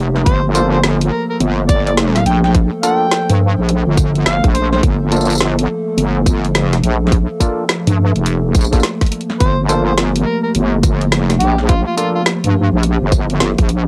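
Glitch hop with a playful, funky swing, this short cut from a longer piece rests on a single Gm9 chord held throughout. An up-front electronic kick and a heavy, saturated wobble bass form the core, the bass wobbling and detuned in unison with a chorus sheen, while a layered kit adds a woody snare, bright hats and tambourine, re-recorded in a small room. An overdriven, gritty harmonica carries the melody with light vibrato and tongue slaps, playing from the opening until 4.8 seconds and returning at 9.4 seconds, with tape echo trailing its amplified tone. Underneath, an auto-wah clav adds percussive, stringy stabs through a combo amp, pumping against the kick. In the background, a warbling, nostalgic pad of wave-folded tones sustains the chords with sampler grit and its own reverb. The whole mix has the hazy, lo-fi character of a home cassette recording in a lightly reverberant space.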